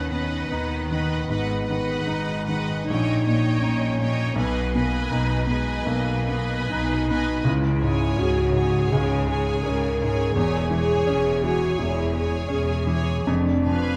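In a rubato 4/4, this passionate, lyrical classical passage, cut from a longer piece, sets a clear, short-sustained baby grand piano melody up front, with a rich, close violin section singing the high melody with vibrato, a smooth-topped, lush symphonic violin section carrying a second line, a distant viola section accompanying, a mellow French horn section holding sustained chords, and an even double bass section grounding the bass beneath a cello section kept in the background, all of it settled in a moderate scoring-stage reverb.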